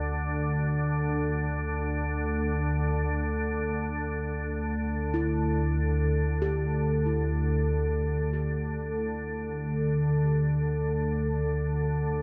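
Dark and unsettling, this free-time dark ambient drone, cut from a longer piece, rests on a calm, detuned organ-like drone in unison, sitting up front with a slow attack, long release, ensemble chorus and its own reverb, while a pure quartz singing bowl rings with slow beating, barely audible in the mix. At 5.1 seconds, soft gamelan-type bossed gongs enter in the background with mellow bronze arpeggios struck with padded beaters and carried by tape echo. A moderate plate reverb of 3.4 seconds and an echo-heavy mix lend the space a haunting depth.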